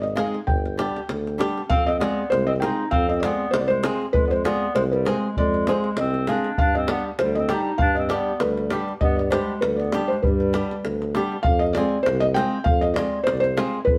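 A felt-muted upright piano, dark and intimate with audible action noise, carries the melody up front in this restless, virtuosic Balkan wedding-band folk piece at 99 BPM in swung 2/4, over a warm tuba bass, a tight, close davul and a fingerpicked acoustic flamenco guitar, while a mellow, vintage-toned clarinet adds a second line from 1.7 s to 11.1 s as the harmony shifts between G and F minor, the band playing live in one room with a moderate studio reverb.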